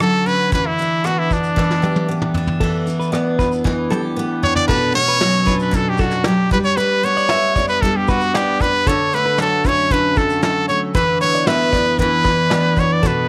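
Acoustic pop at 115 BPM in a straight 4/4, sunny and heartfelt, led by a brilliant, punchy trumpet up front with vibrato and scooped notes, over a bright, full-bodied, double-tracked picked steel-string acoustic guitar and a dark, smooth brush drum kit whose fills land around 1.6 and 3.6 seconds. At 2.6 seconds a twangy, compressed clean electric guitar enters in the background with arpeggios bathed in spring reverb. Chords move through Dmaj7, Em7, Bmadd9 and G, return to Dmaj7, then settle on E5, all in a small room with light reverb.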